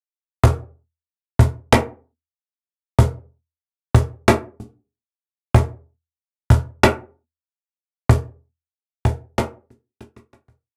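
A dry, close 1970s-style studio sound with little reverb puts a lone cajon up front, its snappy, snare-rattling acoustic tone compressed and saturated. This short, heavy and sludgy metal piece moves at a straight 94 BPM in 4/4, the cajon driving a big half-time groove through a single riff from 0.4 seconds. The piece fades out from 8.1 seconds, and a drum fill at 10.0 seconds closes it.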